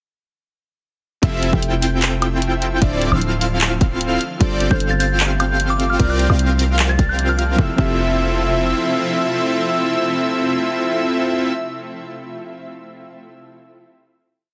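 A big, bright polysynth, fat and detuned, anchors this lush future bass piece at 151 BPM in a half-time feel in F major, holding chords with syncopated pushes that throb in tempo. A hard-clipped electronic kick, a trap kit of bright hats with rolls, claps and woodblock, and a deep, boomy 808-style bass with tube saturation drive the drop from 1.2 s. They sit among a soft, round pluck, an airy, dreamy lead doubling the chords, and a shimmering, ethereal pad, while a glassy, crystalline FM bell with dub echo adds short answering phrases between 4.7 and 7.5 s before a final Fmaj7 chord rings out, all under a heavily compressed, radio-like sound.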